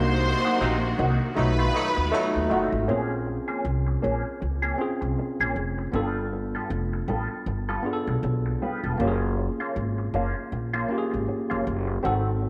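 A bittersweet, silky soul excerpt at 79 BPM in 4/4 with a swung sixteenth feel, moving through Cm7b5, B7#11, Bbm7, G9 and Gbmaj7 in a moderate echo-chamber reverb. A woody, thumpy pizzicato upright bass sits up front with a fingered, compressed guitar riff through wah and spring reverb, while a worn, slightly out-of-tune tine electric piano adds lightly overdriven accompaniment. The opening band accent brings a focused violin section line, lush background string chords, and tight, smooth-topped horn stabs from 0.6 to 2.7 seconds, before bass, guitar and piano carry on alone from 2.9 seconds.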